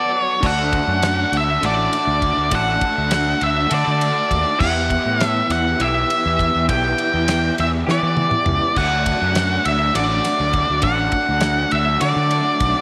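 Psychedelic rock in a lopsided 7/8, this short excerpt from a longer piece feels mysterious and hypnotic. Up front, an octave-fuzz lead guitar carries the melody with a dark, distorted tone and a slapback echo, while an electric guitar through a small old amp plays a slightly broken-up, lo-fi riff colored by harmonic tremolo. A tonewheel organ sits very quietly beneath them, holding clear, clean chords with key click and a slow rotary shimmer. After a brief break, a punchy, overdriven fingered bass and a damped 70s drum kit with a fat snare, tight kick and rolled-off top come in at 0.4 seconds. The harmony moves from D to E minor and back to D, with a drum fill at 7.9 seconds leading into the return. Light reverb and studio ambience give the whole a studio room feel.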